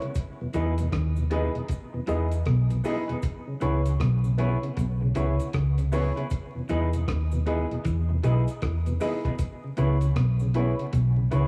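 A serious, laid-back roots reggae groove at 78 BPM with a swung sixteenth feel opens on a dusty, compressed sampler-style drum kit with thumpy kick, hi-hat and rim click, a hollow-bodied semi-hollow electric guitar and a lightly overdriven tonewheel organ with key click and slow rotary, both trailing dub echo, plus boxy, woody upright piano stabs and a band-limited cabasa in the background, before a round, foam-muted fingered bass sits up front and a picked clean electric guitar riff enters at 0.5 seconds over Emaj7 and C#m7, all wrapped in vinyl crackle and small room ambience.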